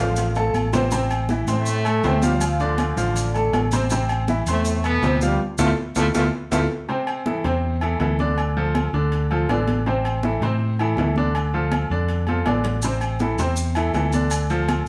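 A driving, danceable salsa groove at 161 BPM in A minor, cut from a longer piece, with a bright, woody upright piano and a round, dark fingered electric bass up front, high-tuned congas and ringing metal-shell timbales with agogo bells, grainy maracas that drop out from 6.6 to 12.8 seconds, and a bright trombone section with light vibrato carrying the melody until 6.6 seconds, all in a live room with wet reverb.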